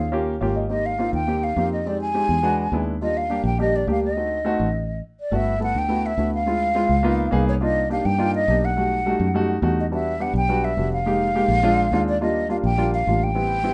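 A close, up-front sound in a small room with moderate reverb frames this sunny, sophisticated Afro-Cuban jazz excerpt in a brisk straight four. A breathy, hollow silver flute with vibrato carries the melody over a dark baby grand piano with short sustain, which adds a brief fill near 0.3 seconds, while a round, foam-muted fingered electric bass anchors the low end. The band hits a stop just before the second section begins at 5.3 seconds, and the harmony moves through rich extended chords such as Gmaj13, C#13 and Ebmaj9.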